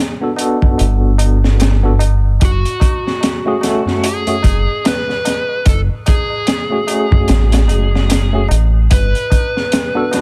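A tremolo-laced tine electric piano and a ringing, high-tuned tabla open this hypnotic, melancholic trip hop excerpt in F# minor at 74 BPM with a swung feel, joined at 0.4 seconds by a crunchy, saturated breakbeat kit with a punchy kick and high-tuned snare and at 0.8 seconds by a round, deep dub fingered bass up front, before an overdriven slide guitar carries the melody from 2.4 seconds through 12-bit sampler grit and dub echo over Gmaj9 and F#madd9 chords in a small room.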